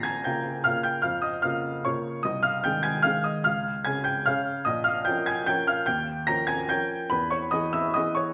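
A clear, woody upright piano plays alone and up front in this brief classical waltz fragment, its intimate, natural tone carrying audible action noise across its range from low bass to high treble. The triple-time pulse is uneven and stretched with rubato, lending an elegant, playful lilt as the harmony moves from Bbm through Ab/C, Db and Eb9 before arriving on E at 7.1 seconds. A wet recital hall reverb surrounds the instrument.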